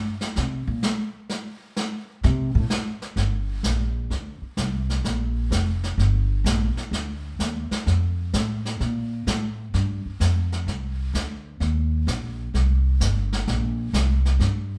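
A woody, pizzicato upright bass on steel strings leads this cool, swinging jazz excerpt in G minor at 128 BPM, taking a solo until 3.2 seconds while an up-front brush drum kit with a natural, medium-tuned snare and hi-hat keeps a swung 4/4 beat, all heard as a live band in one room with a moderate large studio reverb.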